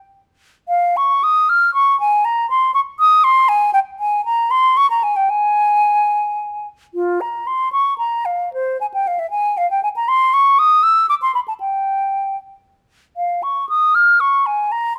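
This classical, baroque-style fantasia for unaccompanied flute unfolds in a rubato 6/8 at roughly 69-80 BPM in Ab major, carrying an introspective, solemn mood. A mellow silver concert flute enters at 0.7 seconds and plays alone up front, its pure metal tone shaped by vibrato, soft attacks and lifted highs as it ranges from F4 to F6. A moderate stone room reverb surrounds the line, and the opening phrase returns at 6.9 seconds before this excerpt ends at 15.0 seconds.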